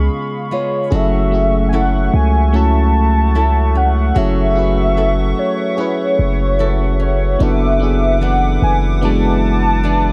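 A dark, close-sounding R&B excerpt with little reverb sets a moody, late-night tone at a slow 74 BPM in F# minor, its sixteenths lightly swung. A velvety, chorused synth lead carries the melody over a glassy, bell-like FM electric piano, a hollow, flute-like pad holding sustained chords, and bright, boxy fingerpicked flamenco guitar arpeggios. Beneath them, a deep, up-front 808-style bass sustains long sine notes, and after a brief break ending at 0.9 seconds the harmony settles on F#m7 before moving to D69/F# at 7.4 seconds.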